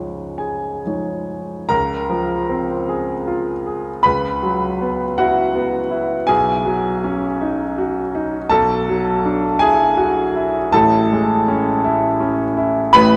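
Hazy and serene, this fragment of a longer impressionist classical work features a clear, intimate baby grand piano playing solo and up front in a rubato 6/8, with audible action noise and long sustain, as its harmonies drift from Dbadd9 through Dbmaj7, Cbadd9 and D69/B to Amaj7, bathed in a wet church reverb that rings for 3.5 seconds.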